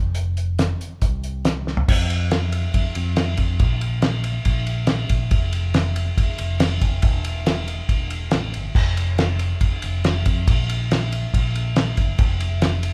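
A straight 4/4 pulse at 140 BPM drives this short cut from a longer folk rock and heartland rock piece, carrying a jangly, nostalgic mood. The cloth-damped drum kit sits up front with a thuddy, dry character: a fat snare, a tight kick, and dark cymbals across crash, hi-hat and ride, with toms rounding out the kit under a rolled-off top. A fingered electric bass holds the low end from E1 to F2, its tone warm and taken direct and amped. A drum fill at 1.7 seconds leads into a new section at 1.9 seconds, which carries on to the end at 12.9 seconds. The pair sound like a band playing live in one large studio room, with moderate reverb giving the smooth, dark kit a sense of space.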